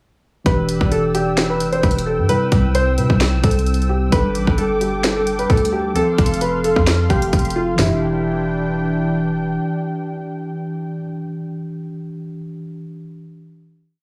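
An overdriven trap drum kit sits up front in this eerie, hard-hitting hip hop piece, its hard-clipped kick, sharp snare, bright hats and toms driving a half-time beat at 131 BPM with fast hi-hat rolls. Beneath it, a deep, boomy 808-style bass built from a sine tone with a noise layer plays long sub-bass notes that follow the kick, with pitch slides. A dark, worn grand piano carries a looping melody in E phrygian, its intimate sound marked by audible action noise and softened by a low-pass filter and tape echo. A mellow tine electric piano holds spread chords, while a detuned sawtooth pad with chorus sustains smooth chords behind them. The short hook moves through Em7, C, Gsus2 and F before the drums drop out at 7.9 seconds and the piece settles on a final Em7, with the electric piano playing alone from 11.0 seconds until 14.0 seconds in a dry studio sound with little reverb.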